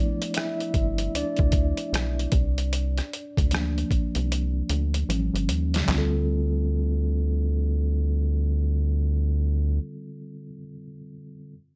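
A rubbery, hollow square-wave bass sits up front in this sultry, introspective neo-soul and R&B excerpt. Its dark, resonant filter pluck bounces between G1 and Eb2 at a relaxed 76 BPM in D minor, with a swung sixteenth-note feel. A mellow, clean tine electric piano, heard through its built-in speakers, carries the harmony from G13 and C9sus4 to A7b13 before settling on Dm7, and it takes a solo over the opening stretch up to 5.9 seconds. The boom bap sampler-style kit sounds gritty, compressed, pitched down and tape-warm, with a thumpy kick, medium-tuned snare, rim click, hi-hat, handclaps and toms, and it plays a fill near the close of the piano solo before stopping at 6.1 seconds. The mix is dry with little reverb, and after the bass ends at 9.8 seconds the electric piano plays on alone.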